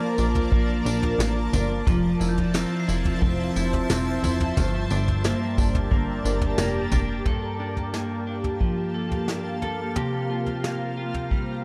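A hazy, melancholic dream pop fragment opens with a shimmering, ethereal pad of sustained chords drifting through chorus and phaser, a clean electric guitar picking arpeggios up front through subtle chorus and tape echo, and a faint, bell-like glockenspiel struck with soft plastic mallets that rings in the background until 4.9 seconds. A soft brush kit from a small room, with tight kick, snare, tambourine and toms, joins almost at once beside a punchy, plucky analog bass of fast-attack, decaying sawtooth tone that stops at 7.2 seconds, while the harmony moves from Bbmaj7 through Fmaj7 and Gmadd9 to Gm9 and C7sus4. The production is dark and warm, with light studio reverb.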